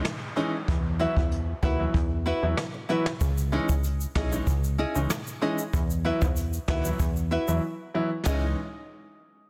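A straight 4/4 dancehall groove at 95 BPM in C# minor, hypnotic and bouncy, rides on an up-front brushed jazz kit with a boomy kick and dark cymbals and a punchy, funky analog bass, while a polished grand piano pumps with sidechain, a fingerpicked nylon-string guitar with audible finger squeak plays arpeggios from 0.4 s, an electronic downlifter sits in the background until 3.2 s, when egg shaker and saturated timbales join, and a brief break at 7.6 s marks this dense, heavily limited cut from a longer piece.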